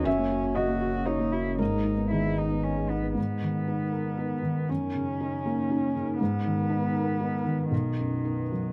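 This fragment of a longer neoclassical piece for piano and strings moves in a loose, rubato 3/4 at around 118 BPM, its beats uneven and breathing, in G# minor with the tuning sitting slightly low at A4 = 437 Hz. A felt-muted upright piano carries the accompaniment up front, its tone soft, mellow and intimate through thick felt, while a single muted cello played con sordino traces a veiled, dark second line with light vibrato. Behind them, a warbly tape-like pad holds sustained chords in the background, nostalgic and lo-fi, with a slow attack, long release, chorus and its own reverb. A clean, deep sine sub bass underpins the opening and drops out at 3.2 seconds, where the music turns to a new section. The harmony drifts from F# and G#m toward D#m7/F#, G#madd9 and finally B, giving a fragile, reflective mood in a dry, close 1970s-style studio sound with light reverb.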